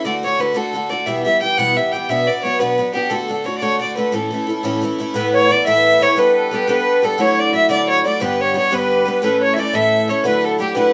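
A rich, smoothly bowed fiddle carries the melody with light vibrato over a shimmering, octave-doubled picked twelve-string acoustic guitar, both up front in this rollicking, bright Celtic folk tune in a straight 6/8. At 5.1 seconds a sweet, reedy accordion with light tremolo tuning enters on a second line as the music moves into a new section. A small room adds a moderate touch of reverb to this passage, which is cut from a longer piece.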